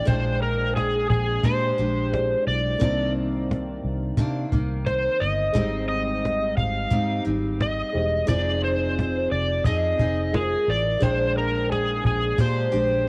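A home-recorded cassette sound and a small-room ambience with light reverb frame this mellow, wistful stretch of bedroom pop, taken from a longer piece and moving at a relaxed 88 BPM in a straight 4/4. Up front, an overdriven slide guitar carries the melody with a bright, biting edge, colored by analog chorus and tape grain. Beneath it, a picked steel-string acoustic guitar adds sparkle and audible finger squeaks, its sound shimmering through lush chorus and a vibrato effect. A dark upright piano sits in the background, woody, boxy and slightly detuned with a short sustain, while a vintage muted fingered electric bass offers a round, foam-muted low end. A cajon with soft hands, faint snares and a close, woody tone keeps time as the harmony drifts from Bb13 through Cm9, Abmaj7 and Fm7 before landing back on Bb13 at 11.0 seconds.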